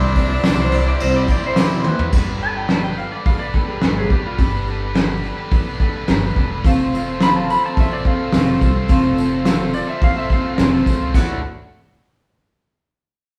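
Recorded live in a stone room with moderate reverb, this hopeful, open-road folk rock and heartland rock piece opens with a bright, close-miked tenor saxophone phrase with vibrato that ends at 1.9 s, over a shimmering, octave-doubled twelve-string acoustic guitar, a cranked, overdriven, double-tracked stack guitar riff, a woody, growly pizzicato upright bass, a dark brush kit up front with a fat snare and punchy kick, a jingly tambourine in the background that enters at 0.5 s, drops out at 1.7 s and returns at 6.7 s, and a reedy, nasal harmonium in the background that drops out at 2.1 s and returns at 6.7 s, while a clean lap steel guitar with volume swells carries a slide second line from 0.5 s.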